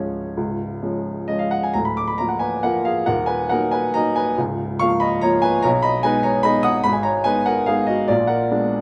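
In a lilting 3/4 waltz time with a flexible, rubato feel, the tempo drifts between 125-155 BPM as this short classical piece unfolds. A solo upright piano carries everything, its tone clear and woody, placed up front so the playing feels intimate and detailed. The instrument spans a broad range, from a deep C#1 in the bass up to Eb6 at the top. The harmony moves through colourful chords such as Bb7/D, Ebm and Abm/Cb before arriving at a tense Bb7b9 at 8.1 seconds, just before the fragment breaks off at 8.8 seconds. A moderate recital hall reverb surrounds the natural sound of the piano, giving the elegant, graceful mood a gentle sense of space.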